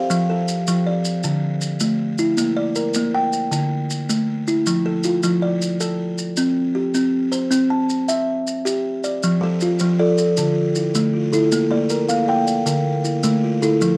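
A buzzing, woody kalimba with a hollow-box ring opens this hypnotic excerpt of Southern African traditional music, cycling arpeggios in F major at 105 BPM in a straight 12/8 through cassette tape and plate reverb, while grainy, mellow maracas shake from 0.1 seconds and a second close-miked, dry, solid-board kalimba sounds briefly at the start before returning at 9.4 seconds, all in a home cassette recording with a short studio reverb.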